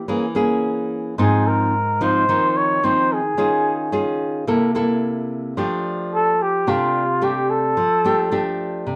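In a straight 4/4 bossa nova groove, this relaxed, breezy excerpt pairs an up-front, fingerpicked nylon-string guitar, its fresh strings giving off the odd finger squeak, with a breathy flugelhorn melody delivered in an intimate, whispered jazz style, using vibrato, soft attacks and scooped notes. Both parts sit in a wet studio ambience, played live together in one room, and at 5.6 s the harmony shifts into a new section that settles on an F69 chord.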